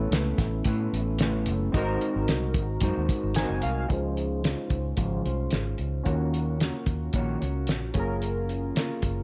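A dry recording with little reverb carries this hazy, dreamy indie and bedroom-pop excerpt at 111 BPM in Db major. Cloth-damped, lo-fi drums with a fat snare and tight kick sit up front, gritty and muffled, beside a round, foam-muted fingered bass. A dark, clean electric guitar with subtle chorus and a warbly pitch drift shares the accompaniment with detuned analog keys built from pulse and sawtooth tones. The keys add a short fill at 3.1 s, and a filter sweep runs from 3.9 s as the chords move from Dbmaj7 through Ebm7 to Gbmaj7.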